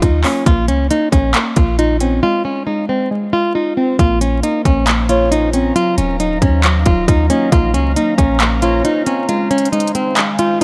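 An eerie, brooding trap beat in Bb minor at 136 BPM with a half-time feel, tuned slightly flat to A4 = 435 Hz, taken from a longer piece. An up-front, fingerpicked acoustic flamenco guitar carries the melody through a low-pass filter and tape echo, over a warbling, dusty, lo-fi pluck whose detuned square and sawtooth layers, chorus and filter sweep give it a dark, evolving texture. A deep, boomy 808-style sine bass with a mellow decay sits beneath an electronic trap kit of hard-clipped kick, crisp hi-hats and handclaps, with the drums mixed up front. A moody, wave-folded ambient pad with a slow attack and built-in reverb enters in the background at 4.6 seconds. Soon after, a round, octave-layered triangle lead adds a soft second line with chorus, phaser, vibrato and tape echo. The bass stops at 8.8 seconds and the kick is muted from 9.3 seconds, while light reverb and vinyl crackle colour the whole track as the chords move between Bbmadd9, Ab6 and Ebmadd9.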